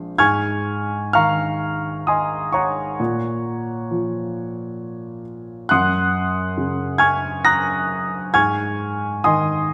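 A grand piano, warm and up front with long sustain, carries this serene, hazy fragment of impressionist classical music on its own, ranging from Bb1 to Bb6. The playing moves in an unhurried three-beat metre with a freely breathing rubato, drifting through colored chords such as Abadd9, Bbm and Gbadd9 before settling on Ab near 8.3 seconds. A moderate recital-hall reverb lends the present tone a gentle halo over this brief excerpt.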